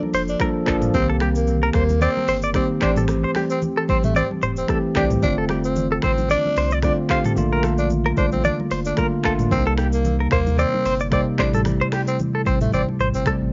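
A bell-like tine electric piano with cassette-tape grit and very quiet, close congas open this sunny, joyful afrobeats excerpt at 112 BPM with a lightly swung 16th feel, soon joined by a twangy, direct-recorded clean electric guitar riff with tremolo, a round sine sub bass, an electronic afro-pop kit of deep kick, hi-hat, snaps, handclaps, rim clicks, shaker and toms, and a raspy, growling tenor saxophone soloing in jazz style with scooped notes over Bbmaj7, Cm7, Am7 and F6 chords, all in a dry, lo-fi home cassette sound.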